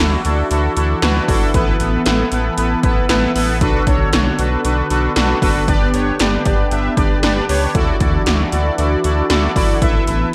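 A driving 4/4 beat at 116 BPM comes from 80s electronic pad drums with a punchy kick, gated snare and metallic hi-hats, tape-warm and up front with the sound of a large room, while a round, deep analog bass holds the low end in this cool synth-pop excerpt. Bold, brassy analog synth brass carries the accompaniment up front, fat and detuned with a filter sweep and chorus, over a swirling, evolving phased analog pad that sits in the background. The chords move through Dadd9, Asus2, Bm7 and G under light reverb, and the piece is cut from a longer track.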